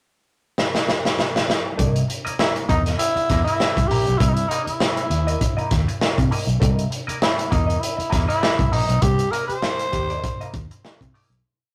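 A gritty, energetic funk groove in 4/4 at 100 BPM with a swung sixteenth-note feel in C mixolydian opens with a crunchy, saturated breakbeat drum fill from 0.6 seconds before settling on C7#9 at 1.8 seconds, where a dark, foam-muted fingered bass with tube saturation lays a syncopated riff full of ghost notes and chromatic approaches and a bright semi-hollow guitar scratches out sixteenth-note rhythm through a wah; from 2.4 seconds a raspy, growling tenor saxophone with tape echo sings hook-based phrases up front, and a clear trombone punches briefly at 9.5 seconds as the band accents the fade-out, all in a rough rehearsal-room sound with moderate reverb.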